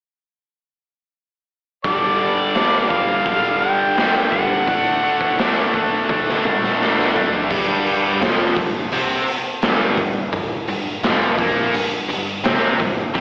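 Blues rock with a southern rock lean at 85 BPM, this swaggering, raunchy excerpt from a longer piece opens at 1.8 seconds with a clear, overdriven harmonica singing a jazz-style solo with vibrato and scooped notes over a tight, double-tracked distorted guitar riff and a gritty, saturated garage drum kit with a punchy kick and muffled top, before a drum fill at 6.1 seconds leads to a dark, round, foam-muted bass entering in the background at 7.5 seconds, all heard as a live club gig through the venue's PA with an AM radio tint.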